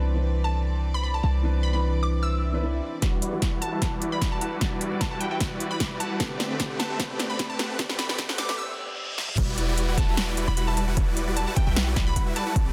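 The huge, detuned supersaw chords stand out in this dreamy, lush future bass excerpt, entering at 3.0 s with a bright sawtooth sheen that moves through a low-pass filter sweep across the build-up, pumping against the sidechain. Before that, a soft, felt-muted upright piano with audible action noise and a dub echo carries the accompaniment over a rich chamber string section bowing sustained chords with light vibrato in the background, while a glassy, crystalline wavetable pluck sings the melody high above through chorus and echo. At 151 BPM in 4/4 with a half-time feel, the harmony moves from Cmaj9 to Em9 and Am11 in E minor. A big-room dance kit with a punchy snare, crisp hats, crash and toms joins a punchy electronic kick at 3.0 s, driving fills through the build while background risers, a swell and a reverse cymbal add tension. The deep, boomy 808-style bass, heard briefly at the start, returns for the drop at 9.4 s on Em9 after the piano and strings have fallen away. 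The master is dense and heavily limited, with light reverb.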